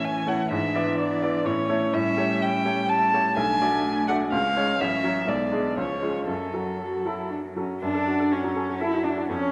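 A muted violin sits up front with the melody, its con sordino tone veiled and smooth on top, with a soft attack, vibrato and portamento as it moves between C#4 and A5. This is a quick, cheerful classical-period movement for piano quartet in 3/4, in F# minor with a lively, rubato feel at 114-127 BPM, tuned to A4 = 443 Hz. A bright baby grand piano, also up front, gives a brilliant, natural accompaniment from A1 to D5. Beneath it, a single muted viola adds a dark accompanying line, while a close, muted cello carries a second line, both bowed with vibrato. The quartet sits in a wet scoring-stage reverb with a 2.0 s decay, and the harmony moves from A through Bm7 and C# to settle on F#m at 6.3 s. All four parts play throughout this 9.5-second passage cut from a longer piece.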